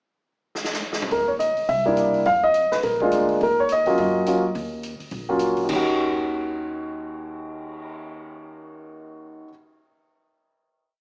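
The recording sits in a moderate concert-hall reverb yet comes through with a small-speaker quality, giving this brief, complete jazz piano trio piece a late-night, swinging mood. A natural-sounding big-band drum kit opens with a fill at 0.5 seconds, keeping time on the hi-hat with sticks over a punchy kick and medium-tuned snare, with crash, cymbal swell and toms coloring the kit. At 1.1 seconds the upright piano and upright bass arrive together. The piano sits up front with an intimate, vintage tone, audible action noise and long sustain, playing a motif-based melody of call phrases alongside syncopated, rootless comping. Beneath it, the pizzicato bass has a thumpy, steel-string sound in a two-feel. The short theme passes through a few chords before the trio settles onto a final chord at 5.7 seconds.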